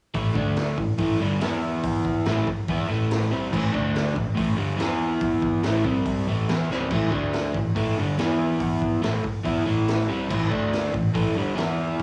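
Menacing and gritty, this garage rock excerpt in A minor drives at 142 BPM in a straight 4/4, with a crunchy, bright, double-tracked overdriven guitar riff up front on tape-worn power chords around A5, D5 and E5, a fretless electric bass sitting in the background with a lush chorus, and a raw, saturated small-room drum kit with a boomy kick, medium-tuned snare and rolled-off top that breaks into a fill at 6.7 seconds, all set in light studio reverb with a home-cassette feel.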